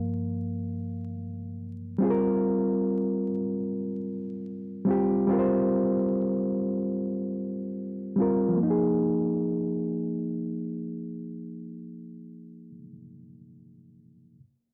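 A 73 BPM groove in 4/4 with a gentle 16th-note swing sets a hazy, reflective hip hop mood in F minor, cut from a longer piece. A reedy, clean electric piano sits up front with a direct tone, spanning G2 to F5 through its cassette-tape colour and moving from Gm7 to C5 and then Fm7 at 8.6 seconds. It plays alone for the opening 2.0 seconds before a filter sweep runs until 8.6 seconds, all wrapped in light reverb, vinyl crackle and a low-pass filtered, home-cassette sound.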